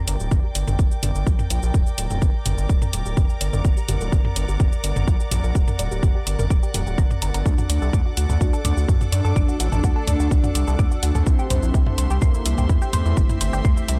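Melodic techno at 126 BPM in G harmonic minor, driving and dramatic, built on a punchy, up-front electronic kick and a house kit of warm hi-hats, shaker and toms in small room ambience, with a gritty, nasal, saturated synth bass pumping beneath dark, floating bowed strings holding sustained chords. A tight, detuned sequenced synth spins arpeggios in the background through chorus, phaser and analog delay under a filter sweep, while a cloudy, blurred granular pad drifts in at 2.3 seconds. At 7.5 seconds a mellow, round synth brass takes up the melody with chorus and tape echo as the chords move from Gm to D and then C.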